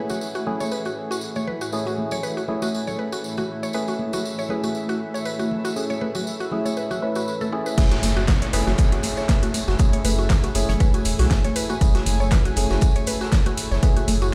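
Moody and late-night, this deep house excerpt at 119 BPM in F# minor opens on an F#m9 colour, with a hollow, nasal organ stab and a cloudy, evolving granular pad both pumping with the sidechain, while a woody mallet-like pluck spins chorused arpeggios through dub echo over soft background congas and a distant, jingly tambourine. At 7.8 seconds the drop lands: a punchy, tape-warm electronic kick sits up front beside a round, deep analog bass, joined by a layered house kit with a fat snare and metallic hats, a very quiet gritty garage kit, and a background downlifter that runs until 11.8 seconds. The mix carries light small-room ambience and the stony reverb of a big sound system playing in a bare room.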